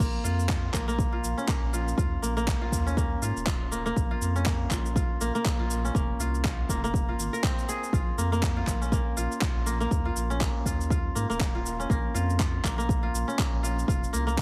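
Heavily compressed with a radio-like sound and light reverb, this hypnotic afro house excerpt at 121 BPM in Bb minor, swung on the sixteenths, places crisp, ringing fingerpicked kora arpeggios up front over a round sine sub bass, both pumping with sidechain and the kora trailed by delay, while a layered deep house kit of crash, handclaps and shaker plays throughout and a deep, tape-warm electronic kick joins at 0.5 s.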